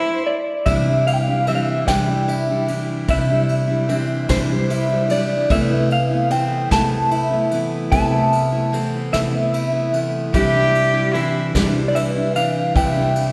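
A lush, reverberant hall sound surrounds this pastoral acoustic folk piece in a slow 6/8 at 50 BPM in C major, moving from Cadd9 to Amadd9/C and back. A slightly broken-up, lo-fi electric guitar with tremolo carries the melody throughout, joined at 0.7 seconds by a full-bodied steel-string acoustic guitar, a dark, boxy ladder-braced acoustic playing arpeggios, woody pizzicato upright bass and a soft brush kit of kick, ride and snare. A close, airy cello bowed sul tasto touches in at the very start and returns at 10.3 seconds with a second line in this warm excerpt.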